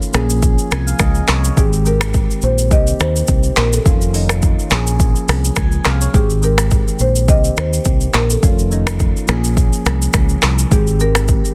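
A swung afrobeats groove at 105 BPM in 4/4 rides on an up-front afro-pop drum kit, with a deep kick, metallic hi-hat, finger snaps, handclaps, rim click and shaker, and a softly clipped snare, anchored by a dark, round, punchy fingered electric bass. Mellow electric-piano-like synth keys, shimmering with chorus and phaser, accompany throughout and add a brief fill from 0.4 to 1.6 seconds. At 1.6 seconds a woody marimba enters with the melody through digital delay, floating over the sunny, romantic cycle of Bbm7, Abmaj7, Cm7 and Faug7 in this short, densely mastered excerpt.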